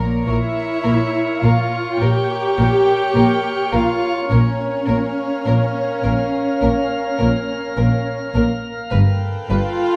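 Mysterious and uneasy, this short cut from a longer suspense film score moves slowly in a straight four, opening on a band accent in the first 0.9 seconds. A drifting glass-harmonics texture holds glassy, bright sustained chords throughout, its chorus and built-in reverb giving the overtones a calm shimmer. Beneath it, bowed strings played sul tasto build a soft-attacked foundation: a double bass section and a rich cello section carry the bass, while a second cello section plays a low riff in the background. A pure, floating violin section carries a quiet melody in the background, joined from 0.3 seconds by an intimate chamber violin line with light vibrato and a dark, woody viola section filling out the accompaniment. A very quiet celesta adds delicate, bell-like touches from soft felt hammers, and at 8.9 seconds the harmony shifts as a faint, close violin section enters on a single high note. 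The scoring-stage reverb and dark production keep the whole ensemble hushed and shadowy.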